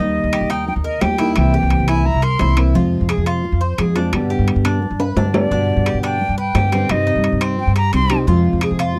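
An airy, up-front silver concert flute with vibrato and a soft attack carries the melody of this nostalgic Cuban son and guajira excerpt, pausing at 2.6 seconds and returning at 5.3 seconds, during a short drum fill that begins around 5.0 seconds. Beneath it, a deep classical nylon-string guitar is fingerpicked, and the Cuban tres picks metallic double-string arpeggios. A growly, dark upright bass sits forward, ringing metal-shell timbales drive the percussion, and very quiet, woody claves tap along in a dry, close 1970s-style studio sound.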